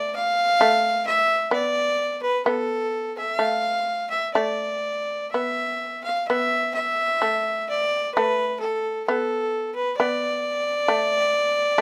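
Japanese traditional chamber music in a meditative, austere mood, this brief 11.8-second excerpt moves at a free, rubato 64 BPM in D kumoi, with a single bright, biting fiddle carrying the melody up front, its airy, nasal bow tone set over a buzzing, plectrum-plucked fretless shamisen playing a low second line, both heard throughout in light reverb as the music passes into a new section at 6.3 seconds.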